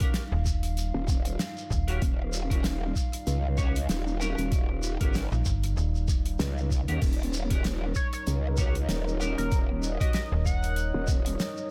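Set in an audible studio ambience, this playful, swaggering glitch hop excerpt moves at 96 BPM in 4/4 with swung sixteenths over an Eb7#9 chord: a gritty, pitched-down electronic kick and a polished, gated 80s drum kit with a fat snare and bright cymbals play alongside a mellow, grainy shekere; a snappy, metallic slap-like FM bass and an aggressive, wobbling growl bass sit up front; a moody, detuned dark analog pad and dark, picked clean electric guitar stabs pump with the sidechain; from 7.8 s a nostalgic, lo-fi warbly tape-like pad drifts in the background before an edgy, tearing sync lead with vibrato and cassette-tape color takes the melody at 8.0 s.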